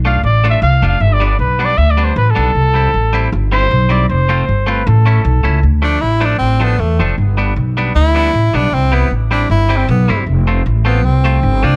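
This driving, mischievous ska excerpt opens with a clean, twangy electric guitar and a woody pizzicato upright bass, set at a brisk 155 BPM in straight 4/4 and in D dorian. A clear trumpet takes the melody almost at once, playing a solo from 0.1 to 5.6 seconds with light vibrato and scooped notes, its vintage pop tone framed by plate reverb. At 5.8 seconds an edgy tenor saxophone picks up the lead for its own solo, colored by plate reverb and analog delay and carrying a light vibrato of its own. The bass sits up front and prominent throughout, while the bright, compressed, picked guitar stays further back in the mix, cycling through Dm, G, C and F with a brief A chord before the progression repeats. The whole passage carries the slightly worn character of cassette tape, with a small room ambience and light reverb, and it is cut from a longer piece.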